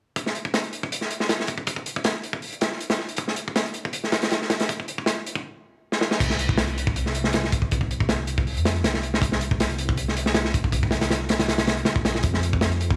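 This drum and bass excerpt with a jungle edge runs at 159 BPM in 4/4, with a slight swing on the sixteenths that gives its frenetic, raw energy a loose push. A crunchy breakbeat drum kit opens alone at 0.2 seconds, its acoustic crash, hi-hat, punchy kick and medium-tuned snare sounding saturated and gritty, with a rolled-off top and high-pass filtering across every piece of the kit and its room sound. The drums sit up front in a small, dry room, dark and smooth despite their bite. A drum fill at 5.9 seconds leads into the drop at 6.2 seconds, where a dark detuned saw bass enters between Bb1 and F2. Its deep, rumbling tone beats against itself, blending sawtooth, square and sine character with a fast attack and sustained notes that sit beneath the breaks until the cut at 13.0 seconds.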